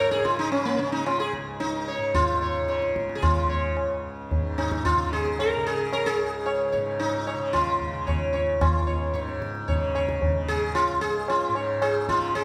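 Hindustani classical music, radiant and meditative, unfolds in this short excerpt cut from a longer performance, moving in a straight five-beat cycle. The sitar carries the melody from the very start, plucked with a plectrum and placed up front, its buzzing tone shimmering with the ring of sympathetic strings as it ranges from Bb3 to Db5. Beneath it, a softly plucked tanpura holds a low, buzzing drone between Db2 and Db3, sitting quietly in the background. The tabla enters at 0.1 seconds, low-tuned and ringing, heard close and dry against the other parts. The whole performance is set in a resonant recital hall, whose wet reverb of about 1.5 seconds lends the sitar and tanpura a glowing, spacious halo through to the cut at 12.4 seconds.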